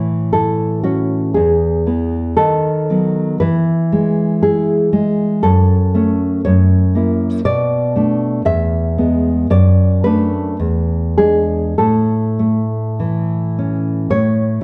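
A full-bodied nylon-string guitar with fresh strings plays alone in this short excerpt from a longer romantic classical piece, its thumb-plucked tone and occasional finger squeak sitting up front across a range from E2 to E5. The mood is sunny and nostalgic, moving in a rubato 2/4 through a progression that settles back on A major near 11.8 seconds. A moderate recital-hall reverb surrounds the guitar, giving the dark, warm production a sense of space.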